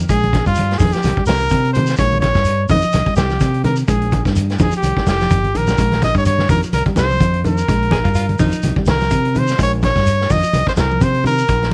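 Afrobeat at 126 BPM in Bb dorian, intense and hypnotic, with a loose sixteenth-note swing circling between Bb and C minor chords across this short excerpt. A clear, up-front trumpet carries the melody with light vibrato and plate reverb over a round fingered bass, a gritty, saturated vintage drum kit with a rolled-off top and a fill at 5.3 seconds, grainy shekere, and damped, low-tuned congas that sit in the background. A slightly broken-up electric guitar plays background arpeggios through lush chorus and tape echo, an edgy, forceful alto saxophone cuts in briefly at 7.9 seconds, and vinyl crackle and light reverb lend the whole a worn patina.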